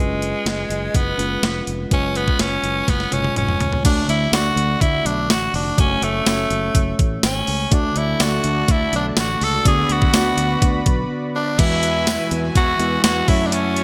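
A bright 1980s-style digital sheen and a moderate plate reverb frame this urgent, nostalgic pop excerpt, cut from a longer piece and moving at 124 BPM in a straight 4/4. Up front, a raspy tenor saxophone carries the melody with vibrato, gritty force and a smooth top, its line trailed by digital delay. Beneath it, a clean 12-bit drum machine pushes a thumpy kick and a medium-tuned snare with a tape-tinged, sampler-style punch, while a round, foam-muted fingered bass and a worn, slightly out-of-tune tine electric piano heard through its built-in speakers fill in the harmony. A jingly, close and dry tambourine sits in the background, and at 7.7 seconds a brassy, detuned analog pad with chorus enters, evolving behind the saxophone. After a short break at 11.1 seconds, a very quiet, compressed overdriven electric guitar joins at 11.6 seconds as the chords move from D and F#m through Bm/D to Eadd9 and F#m7.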